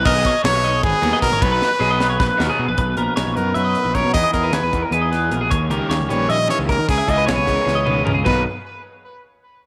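A compressed twelve-string electric guitar plays spring-reverbed arpeggios over a fuzzy, overdriven picked bass that sits up front, opening this intricate, playful math rock and midwest emo excerpt in 7/8. A brilliant, forceful trumpet with vibrato carries the melody through tape echo, while a crisp fusion drum kit with a high-tuned snare and punchy kick adds fills, and a double-tracked overdriven guitar riff sits in the background, stopping at 2.6 seconds and returning at 5.7 seconds. From 2.8 seconds, a twangy, fingered clean guitar joins with warbly pitch drift as seventh chords move through a moderate echo-chamber room.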